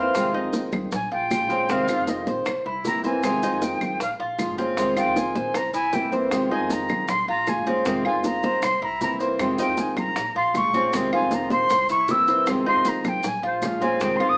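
An airy, expressive jazz flute solos up front from the first moment over dark, fingerpicked nylon-string guitar, mellow double-stringed tres arpeggios and a woody pizzicato upright bass, while soft-handed congas, round bongos in the background, grainy maracas and woody background claves fill out this nostalgic Cuban son and guajira passage cut from a longer piece, played live in one room with wet large-studio reverb and a small-speaker sound.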